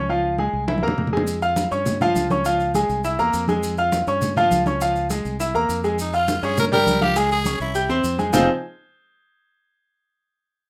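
Driving and fiery, this short salsa passage in F minor moves at a brisk 204 BPM in straight 4/4, cut from a longer piece. A bright concert grand piano leads the accompaniment up front, brilliant and polished with deep bass and short sustain, while a round, fingered electric bass sits beneath it. Damped congas with a thin, vintage skin sound and soft hands enter almost at once, and grainy, mellow maracas join at 1.3 seconds from a distant, roomy space. The harmony circles Db, C7 and Fm before shifting to darker colours such as Gm7b5 and settling on Fm7. At 6.0 seconds a raspy, growling tenor saxophone takes the melody, gritty and edgy with light vibrato. The whole has the loose feel of a rough home demo in a small, wet-sounding room.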